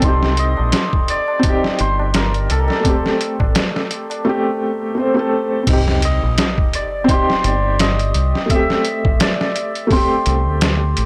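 A 16th-note swing at 85 BPM in 4/4 drives this smoky, dark trip hop excerpt in C dorian. A compressed, pitched-down sampler-style drum kit sits up front, with a thumpy kick, a medium-tuned snare, hi-hat and crash, re-recorded in a small room. Beneath it, a deep dub fingered electric bass plays a round, punchy low line, while a felt-muted upright piano offers soft, intimate accompaniment with tremolo over chords moving between Cm and Am7. A bright, shimmering hammered dulcimer carries the melody, roughened by vintage 12-bit sampler grit and trailed by tape echo. A low-tuned tabla rings in the background until 4.2 seconds, and a very quiet electronic sub drop arrives at 5.8 seconds to mark an impact as the second section opens, all set in a digital ambience with a dry hardware character.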